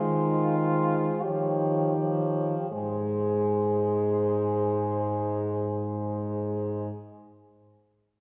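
Heard from further back in a reverberant scoring stage with a 2.0-second decay, this serene, lyrical classical fragment for horn quartet moves in a rubato 3/4 at 38-49 BPM in Ab major, slowing over its first 2.7 seconds as the harmony passes from Ab/Eb through Eb9 to settle on Ab; a clear French horn sings the melody with light vibrato, soft attack and a smooth top, a warm, distant second horn and a roomy accompanying horn fill the middle, and a gentle-edged, up-front bass horn with a touch of vibrato anchors the sound beneath.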